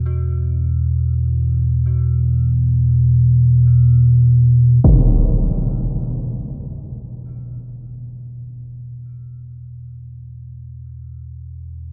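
Unsettling and cavernous, this dark ambient drone excerpt rests on a deep, ominous rumble of triangle and sawtooth tone that carries a filter sweep until 4.9 seconds, while an eerie, inharmonic FM bell, detuned and chorused with tape echo, plays faint arpeggios until 5.5 seconds and a huge, bright impact strikes up front at 4.8 seconds, the whole set inside a long cathedral reverb with a cassette-tape grain.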